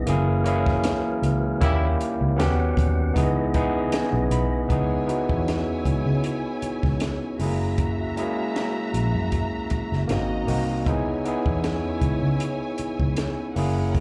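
Cinematic and smooth, this lush 1970s-style soul excerpt moves at 78 BPM with a swung feel in C# dorian, heard as a live gig through a club PA. A gritty, barky overdriven tine electric piano with slapback echo carries the accompaniment up front over a round, foam-muted electric bass and a compact cocktail kit with a punchy kick and high-tuned snare, while a fat tonewheel organ with key click and slow rotary speaker holds chords in the background until 4.7 seconds and a tight horn section lands a brief stab at 1.6 seconds. After an electric piano fill, veiled con sordino strings with tape echo take up a second line from 4.7 seconds over chords moving from C#m7 through F#7 and G#7.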